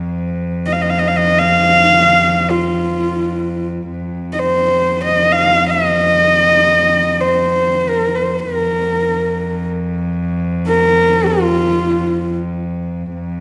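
A dark, husky horsehead fiddle carries the melody between F4 and F5, close and up front, with airy bowing, vibrato, portamento and a soft attack, entering at 0.7 seconds over a floating cello drone on F2. The cello, bowed sul tasto with a pure, rich tone, sounds from the start to 13.4 seconds beneath the fiddle in this windswept, solemn Mongolian folk piece in free time, tuned to A4 = 436 Hz. A wet recital hall reverb surrounds the two players, and the piece is cut from a longer work.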